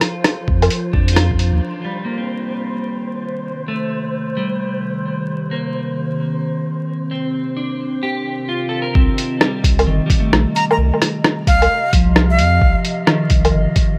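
The breathy, bright jazz flute enters at 10.6 s with a short, vibrato-laden phrase between F5 and Bb5, trailed by tape echo. This ghostly, wistful future garage excerpt moves at 131 BPM in 4/4 with a swung 16th feel, set in C dorian and passing from F to Cm7 to Cm. A clean, dark electric guitar sits up front with lush chorus, tape echo and sidechain pumping, while a warbling, nostalgic tape-like pad holds sustained chords beneath it, and both sweep through a filter across the long middle stretch. The muffled, pitched-down sampler-style kit of hi-hat, rim click and woodblock plays briefly at the opening with a thumpy kick and a round sine sub bass, then all three return for the final section. An airy, wind-like noise texture hovers on a single C5 until 9.0 s, and vinyl crackle with light reverb and digital ambience colours the whole recording.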